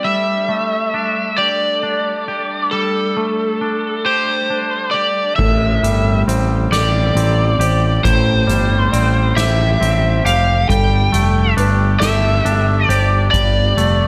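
An up-front, bright, overdriven slide guitar carries the melody in this cathartic, cinematic post-rock passage, its fingerpicked lines touched by slapback echo. It moves slowly at 45 BPM in a straight 6/8 in A minor, over chords that shift from Gsus2 to Am7 and back to Gsus2. Beneath it, a clean, twangy electric guitar plays fingered arpeggios with its own slapback echo, while a rich, very quiet studio string section holds smooth, bowed chords with vibrato. At 5.4 seconds the band fills out: a growling, overdriven picked bass pushes up front, a soft-mallet drum kit brings dark cymbals, a medium-tuned snare and a punchy kick with a natural hall sound, and a felt-muted upright piano adds mellow, intimate arpeggios in the background, its action noise audible beneath the echo. Light reverb and studio ambience surround the whole performance, which is cut from a longer piece.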